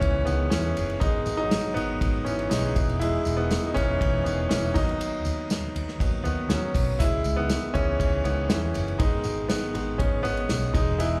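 A straight 4/4 pulse at 120 BPM drives this dramatic, earnest piano-driven pop excerpt, where a clear, up-front concert grand with audible action noise and slapback echo carries the lead over C#m, G#m, E and B/D# chords, backed by a dark, foam-muted fingered electric bass, an acoustic drum kit played with bundle sticks, a tight kick and medium-tuned snare, and a jingly tambourine entering at 0.3 seconds in the background, all heard through a club PA with light reverb.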